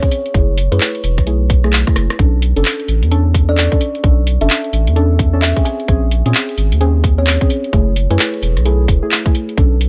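Soulful and late-night, this swung two-step UK garage groove pairs a tight, up-front electronic kick with a layered garage kit of handclaps, rim clicks and warm hats, beneath a thick, saturated sine sub bass that enters at 0.3 s, and a brief drum fill arrives at 1.8 s. Dark, warbling chord stabs with a vintage, detuned character, thickened by chorus and tape echo, move through F#m9, Bm9 and A#m9 before returning to F#m9. A quiet, woody kalimba rings out with tape echo from 0.7 s, all in a dry, close-sounding space.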